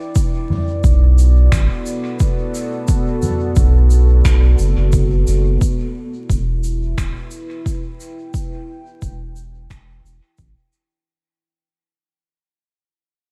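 A dark, moody ambient pad with chorus and built-in reverb opens this deep, meditative ambient dub excerpt in E minor at 88 BPM, joined at 0.2 s by a punchy, overdriven electronic kick up front and a distant, roomy soft-mallet kit of finger snaps, shaker and toms with dub echo, then by a round, sustained analog bass from 0.8 s, all over small-room ambience and vinyl crackle as the harmony moves from Bm7 to Em7 and the music fades out from 5.6 s.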